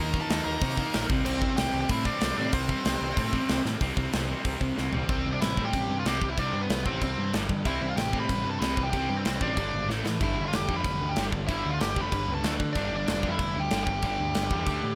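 A nasal lead guitar with a parked wah sits up front in this upbeat, rebellious punk rock clip, its overdriven, picked melody ranging from B3 to B5 across the whole 14.9 seconds. Behind it, two double-tracked rhythm guitars play the riff in the same low register: one a bright, cranked stack tone and the other a crunchier, rounder overdriven sound, both set back in the mix. A growling picked electric bass runs underneath, overdriven and blending a direct and amped signal. The big rock drum kit drives a straight 4/4 at 188 BPM with a punchy kick, medium-tuned snare, bright cymbals, hi-hat and toms in a big room, with fills at 3.7, 4.8 and 9.9 seconds, the first two marking the turns between sections. The harmony moves from Eb5 and C5 through C, G5, A5, G and D5 chords, and the dry, close sound keeps the whole band tight and immediate in what is clearly a cut from a longer piece.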